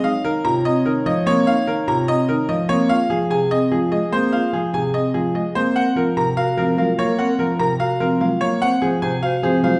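In a brisk, straight 7/8 at 294 BPM counted in eighths, this bright, hypnotic classical fragment of minimalist pattern music in G-flat Lydian sets a brilliant, worn grand piano melody up front over a dark, boxy concert grand accompaniment with deep bass, while a close-miked, dry vibraphone played with soft mallets and its motor off rings out metallic arpeggios and a distant, roomy clarinet adds a mellow second line in the background, all moving through B-flat minor add9, F minor seventh, G-flat major seventh and A-flat seventh chords, with a new section at 5.8 seconds, in a reverberant church-like hall.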